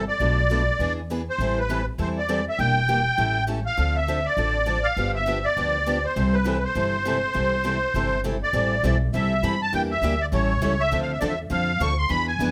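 Swung eighth notes drive this lively excerpt of acoustic string swing, where a reedy, shimmering musette accordion carries the melody up front with plate reverb over a woody, thumpy pizzicato upright bass on gut strings, while a boxy picked archtop guitar and a bright steel-string acoustic guitar set in the background join as accompaniment at 0.2 seconds, the whole band heard in a moderate club room as the chords move from Bm7b5 through C6 and on to Dm7.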